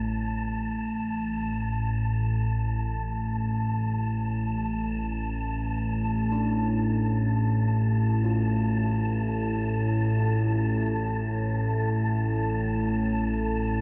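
Floating in free time, this unsettling, desolate dark ambient drone is cut from a longer piece and anchored by an up-front analog drone, a mellow, evolving sawtooth and pulse-wave tone with pulse-width modulation and chorus that swells in slowly and sustains as the harmony shifts from a minor chord to a suspended one at 7.0 seconds. Above it drifts an airy, breathy, wind-like noise layer with its own built-in reverb, while very quiet gamelan-type bossed gongs trace metallic, bronze, beating arpeggios. A cavernous cathedral reverb with a 6.8-second decay bathes the whole production.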